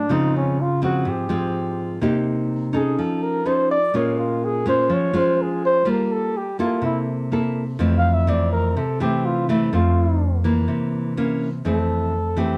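A mellow flugelhorn carries a relaxed, sophisticated bossa nova melody in jazz style, soloing up front with a light vibrato from 0.0 to 11.6 seconds. Beneath it, a full-bodied, fingerpicked nylon-string guitar supplies deep classical accompaniment through harmonies such as Dbmaj7, F7b13 and C7b9 before settling on Fmaj7. A wet studio reverb places the pair further back in the room in this excerpt from a longer piece.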